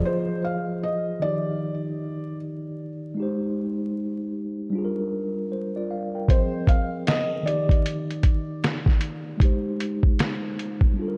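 A lazy swing on the sixteenths drives this short lo-fi hip hop excerpt in four, its nostalgic, hazy mood set by a dreamy mix soaked in plate reverb, with vinyl crackle and a dulled top end. A mellow tine electric piano carries the accompaniment from start to finish, clean and up front, sounding as if played through its built-in speakers as it moves through Fm7, Ebmaj7, Abmaj7 and Gm7. Over it, a felt-muted upright piano sings a soft, intimate melody treated with delay, close and warm, until it stops at 8.6 seconds. The sampler-style drum kit enters at 6.3 seconds, compressed, pitched down and muffled, its thumpy kick, fat snare and hi-hat sitting up front and louder than the keys. A break falls at 11.0 seconds as the passage closes.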